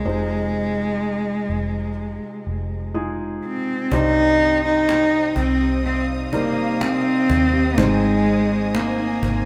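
Pop ballad, heartfelt and emotional, at 62 BPM in 4/4, where an up-front bowed cello with nasal, boxy vibrato carries the melody over a soft felt-muted upright piano with audible action noise and a dark, round, foam-muted electric bass, until at 3.9 s a lush sul tasto string section joins alongside a fingerpicked nylon-string guitar with finger squeak and digital delay and a woody, distant cajon, the latter two sitting in the background, in a rough home demo mix set in a moderate hall reverb.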